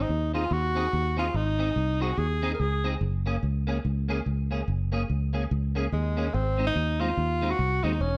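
A swung, bouncy ska groove in four drives this cheerful short cut, with a round, foam-muted fingered electric bass sitting dark and up front throughout, a clean, picked electric guitar adding chorus-tinged accompaniment with slapback echo, and a breathy tenor saxophone carrying the mellow, subtone melody with light vibrato and scooped notes, dropping out at 2.9 seconds before returning at 5.9 seconds, all set in a small, lightly reverberant room.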